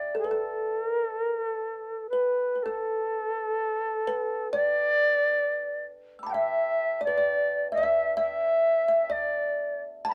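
A reedy, airy shakuhachi sits up front and carries the melody in this short excerpt of Japanese chamber music, its soft attack, vibrato and rolled-off highs giving a breathy bamboo voice over a slow, rubato pulse of about 61-66 BPM in 2/4. A woody, ringing kalimba plays a second line beneath it throughout the 10.1 seconds, with a bright thumbnail pluck, while the music moves into a new section at 2.6 seconds. The mood is austere and calm, set in a modest small-room ambience with the worn, warbling pitch drift of old cassette tape.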